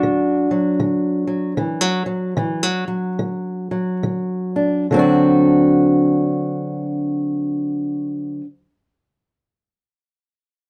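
A fingerpicked old ladder-braced acoustic guitar with woody, boxy tone and dark old strings sits up front, playing alone in this gritty, laid-back excerpt of swung acoustic country blues in D mixolydian at about 68-79 BPM, easing its pace over D until 4.9 seconds before shifting to D7 in the following section, all set in a moderate studio room within a dark production.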